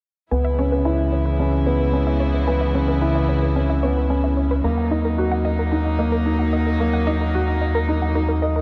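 A dark, intimate production set in a lush hall reverb frames this brief, melancholic electronica excerpt in C# dorian at 111 BPM, moving from C#m7 to D#m at 4.6 s. Up front, a felt-muted upright piano with audible action noise plays a mellow riff through tape echo, shimmer reverb and a low-pass filter sweep, while a round analog bass holds the deep end. Behind them, a reedy chamber string section with gut-string tone sustains chords in shimmer reverb, and a detuned unison pluck traces punchy, short-decay arpeggios through tape echo in the background.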